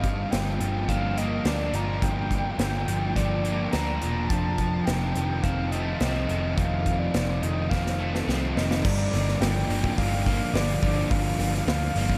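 Brooding and dreamy, this 12.2-second shoegaze and dream pop clip in G minor at 106 BPM sets a breathy, flute-like synth melody with chorus and diffuse delay over an overdriven semi-hollow guitar riff trailing reverse reverb, a thick fuzz guitar riff with analog chorus, a dark, round foam-muted bass and a big rock kit with a boomy kick, moving from Gm7 to F7 before a drum fill at 7.7 seconds leads back to Gm7, all soaked in a huge ambient reverb.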